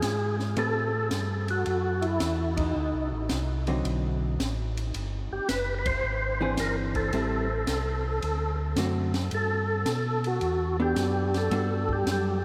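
Bathed in huge, echoing ambience, this swinging, bluesy soul jazz organ trio excerpt at 110 BPM in G major sets a fat, lightly overdriven percussive tonewheel organ melody with chorus vibrato and slow rotary speaker over a round, dark tonewheel organ bass line, while an open jazz drum kit with dark cymbals, a high-tuned snare and a boomy kick swings underneath, a dark, compressed hollow-body jazz guitar enters at 0.6 seconds with clean picked accompaniment, and the band hits accents at 2.5 and 5.8 seconds.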